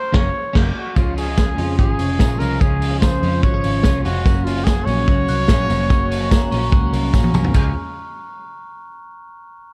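A band accent opens this youthful, nostalgic slice of jangly indie pop at 0.0 seconds, with a breathy, whispered trumpet carrying the melody in a close, intimate pop style touched with vibrato and a soft attack. Underneath, a vintage drum kit sits up front with a punchy kick, medium-tuned snare, dark cymbals, toms and a rolled-off top, roughened by 12-bit sampler grit, while a foam-muted picked electric bass gives a round, amped low end. One twelve-string electric guitar picks clean, compressed accompaniment in the background, and from 1.0 seconds a second, brighter and twangy twelve-string adds arpeggios through analog chorus, joined by a jingly tambourine tucked far back. At 5.3 seconds a glockenspiel played with soft plastic mallets brings an airy, bell-like second line, and a drum fill leads toward a new section as the excerpt is cut from a longer piece. The whole production feels dark and warm, with light reverb and a small room ambience.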